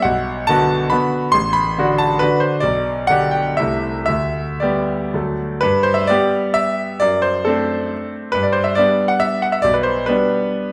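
A brilliant, up-front concert grand piano plays alone in this short cut from a longer romantic classical work, a rustic and proud triple-time dance built on dotted rhythms and shaped with flexible rubato. Its range reaches down into a deep bass, and the harmony opens on B minor and arrives at a D chord before a second phrase at 5.6 seconds passes through a D7 chord. A moderate recital hall reverb lends the natural piano tone a gentle sense of space.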